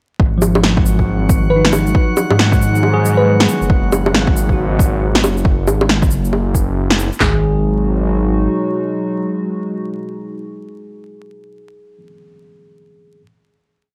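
A swung 137 BPM two-step groove of muffled, overdriven deep house kick, punchy snare, claps and toms, layered with skittering bongos, shaker and snare, drives this rainy, wistful future garage piece in G# minor, where a menacing detuned saw bass glides and pumps beneath scattered, gritty tine electric piano, a calm glassy texture of drifting overtones, short sparkling FM electric piano phrases and a warbling, nostalgic tape-like pad, until the drums stop at 7.3 seconds and the bass, pad and electric piano carry the closing G#m7 chord, the piano lingering to 13.2 seconds amid light reverb and vinyl crackle.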